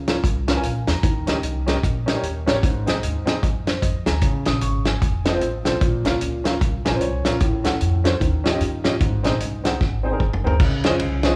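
A moderate recital-hall reverb surrounds this short fragment of uptempo gospel, which sounds as though it was captured in a church or concert hall. At 150 BPM in 4/4 with a light swing on the eighths, it sits in Db major and feels jubilant yet reverent. The grand piano sounds warm and intimate, with audible action noise and long sustain, and it accompanies a progression moving from Bbm through Eb7, Ab and Gbm/A toward a closing Dbmaj9, adding short fills several times along the way. Beneath it, a pizzicato upright bass with gut strings gives a woody, thumpy low end. The dry, mid-forward drum kit sits up front with a punchy kick, fat snare, toms, hi-hat and dark ride and crash cymbals under a rolled-off top, and it plays a fill at 9.8 seconds leading into the final chord.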